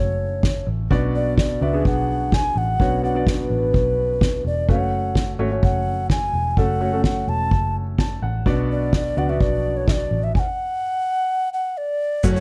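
Piano-driven pop at 127 BPM in 4/4 with a straight feel, this short excerpt is dramatic and earnest, moving between F#m and Bm. A breathy, clay-toned alto ocarina carries the melody up front with a soft attack and a slapback echo, while a baby grand piano with an open, short-sustain sound supplies the accompaniment and adds a fill from 7.8 to 8.5 seconds. A dark, foam-muted electric bass with a round, amped tone holds the low end, and a soft-mallet drum kit with a fat snare and boomy kick enters at 0.4 seconds, sitting prominently in the mix. The band hits a stop at 10.3 seconds, and at 12.2 seconds a full-bodied fingerpicked steel-string acoustic guitar and a grainy, bright egg shaker appear briefly. The sound is a dry, close 1970s-style studio recording with small room ambience.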